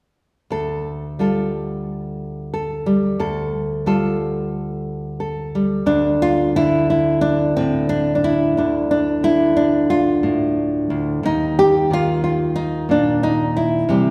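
A lone nylon-string guitar enters at 0.5 s, fingerpicked and placed up front, opening this wistful, reflective fragment of a longer folk piece. The playing has a rubato feel, and the instrument sounds full-bodied, with a deep classical character across its range, from low D2 up to A4. After an opening passage resting on a minor chord, a second passage begins at 5.9 s, where the harmony colours into Dmadd9 before shifting to Ebsus2 at 11.2 s, an open, unresolved turn that deepens the reflective mood. The guitar is heard in a church or concert hall, wrapped in a generous, wet reverb with a long 1.7-second tail that lets each note bloom and linger.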